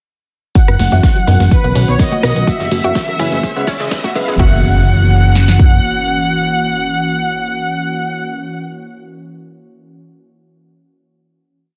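A four-on-the-floor punchy kick and snare drive this hopeful, expansive progressive house piece at 125 BPM in F# mixolydian, alongside programmed hats, rim and crash, a gritty pitched-up sampler breakbeat, jingly tambourine, background congas and cowbell and a fat, saturated analog bass through the build, while a smooth detuned supersaw carries the hook over an airy breathy pad, a round nasal analog pluck riff and deep dotted chord stabs, the synths pumping to the sidechain and the supersaw, pluck and stabs filter-swept through the build, as a faint glassy harmonics texture drifts on a high note and a drum fill at 2.5 s plus a very quiet riser and impact lead into a final F#7 chord held from 4.4 s to 8.2 s.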